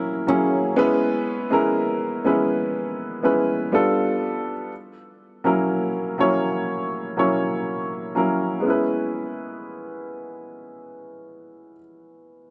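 Bathed in a lush hall reverb, this moody, longing R&B fragment, cut from a longer piece, moves at a slow 61 BPM in C# dorian, where an up-front, natural baby grand piano carries the accompaniment through chords such as F#7, C#m7 and G9, while a small, fingerpicked nylon-string guitar with delay and audible finger squeak plays arpeggios only until 1.4 seconds.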